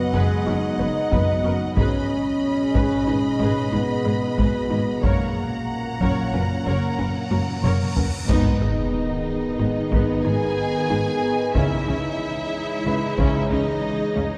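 Futuristic and vast, this excerpt from a hybrid orchestral and electronic film score moves at 92 BPM in 5/4 and G# minor, where a clear, punchy French horn section and a warbly, lo-fi tape-like pad with chorus, phaser and built-in reverb hold sustained chords over lush bowed cellos and rich double basses, while violas, a second violin line, a woody FM synth pluck playing arpeggios and a very quiet, brilliant grand piano fill in the texture. A close, dry taiko ensemble struck with hard sticks drives the piece from 1.1 seconds, and a huge, bright cymbal swell and sub drop at 7.3 seconds leads into a band accent and impact at 8.3 seconds, where a smooth, vibrato-rich violin melody enters. The whole is set in a dark production with a wet concert hall reverb.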